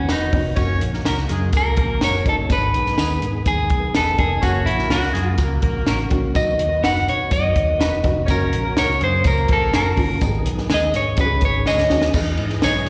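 Uptempo 1960s-style soul with a joyful, warm mood, this short cut from a longer piece features a clean, picked electric guitar carrying the melody as a solo from the start, coloured by spring reverb and slapback echo. Beneath it, a second, darker guitar adds stabs up front, while a foam-muted, round electric bass, a dry cocktail drum kit with a punchy kick and high-tuned snare, a jingly tambourine, and a worn, slightly detuned upright piano with audible action noise fill out the groove. A lightly overdriven tonewheel organ with slow rotary speaker sits in the background holding chords, a smooth horn section plays a second line from 0.6 to 9.9 seconds, a drum fill arrives at 11.7 seconds, and the whole band sounds like a live gig heard through the venue's PA in a reverberant hall.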